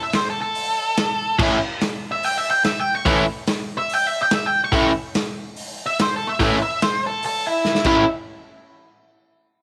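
Swaggering and raw, this straight-ahead garage rock clip from a longer piece opens with a fuzzy octave-fuzz lead guitar carrying the melody, while a gritty, up-front drum kit with a boomy kick, dark cymbals and a pumping small-room sound drives underneath. At 1.4 seconds a double-tracked, compressed overdriven electric guitar joins with a dark, picked riff. A drum fill at 7.7 seconds closes out the section in a light, roomy ambience.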